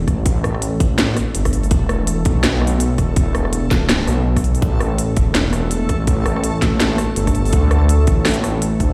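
Heard as if through a big sound system in a bare room with large studio reverb, this heavy, tense half-time drum and bass cut at 165 BPM sets a deep, rumbling, saturated detuned saw bass up front beside a tight, tape-warm electronic kick and a layered kit of cracking snare, crisp hats and rim click, while a bright, reversed, granular texture swells dreamily over A5, E5 and D5 chords.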